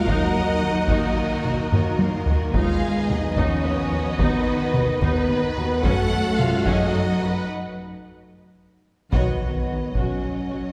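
A close, dry taiko ensemble struck with heavy sticks drives this majestic, adventurous epic orchestral film score at 73 BPM in 6/8, adding drum fills beneath a rich violin melody with vibrato in the background, a smooth second violin line, a clear, distant viola accompaniment, mellow, roomy French horn chords, very quiet trombone chords and portamento string-section chords that drop out at 7.5 seconds for a break, while an expressive cello and an even double bass anchor the Ebm, Cb/Eb and Gbm harmony until a band accent lands on Cbadd9 at 9.1 seconds, the ensemble heard from further back in a reverberant scoring stage.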